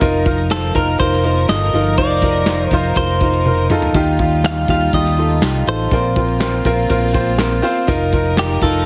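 Hopeful and warm, this short excerpt of piano-driven pop moves in a straight 4/4, with a woody upright piano up front carrying the accompaniment over chords that shift from F7sus4 to Ebadd9 and Bbsus2 before returning to F7sus4. Behind it, a studio string section holds sustained chords with a soft, floating, sul tasto sound. A fingered electric bass adds a dark, round, amped low end, while an airy, polished country drum kit with a punchy kick, medium-tuned snare, hi-hat, toms and handclaps drives the groove, marked by a drum fill at 3.5 seconds. From 0.5 seconds a clean, picked electric guitar recorded direct carries the melody, its compressed tone trailed by tape echo. The mix sits in a moderate large studio reverb with a touch of small room ambience, and the whole has a heavily compressed radio sound.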